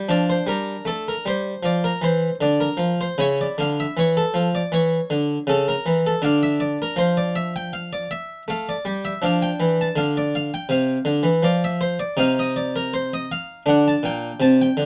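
A lone harpsichord opens this short excerpt from a baroque-style suite movement, its plucked, brilliant tone set up front in a close, detailed recording with light reverb. The mood is solemn and grave, and the playing moves with a free, rubato feel over a steady four-beat metre. The instrument has an Italian-style voice, and its octave strings add ringing depth across a span from Bb2 up to A5. The harmony settles onto Dm/F at the start, passes through Aadd11/C# at 3.1 seconds, and returns to Dm before darkening toward Cm11 and a final Bbmaj13 at 13.7 seconds. The harpsichord carries the whole passage alone until the cut at 14.9 seconds.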